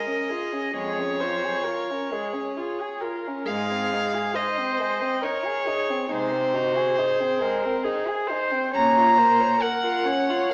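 A tender, lyrical string quartet movement in Db major at 68 BPM in 3/4 opens with a rich, pure first violin floating at a distance over a dark second violin and a close, intimate viola, all three bowed softly sul tasto with a rubato feel. At 0.8 seconds a woody cello adds the bass line, and the harmony moves from Db through Ab to Bbm. The quartet sits in a reverberant recital hall, colored by vinyl crackle and a small-speaker tone, in a fragment cut from a longer piece.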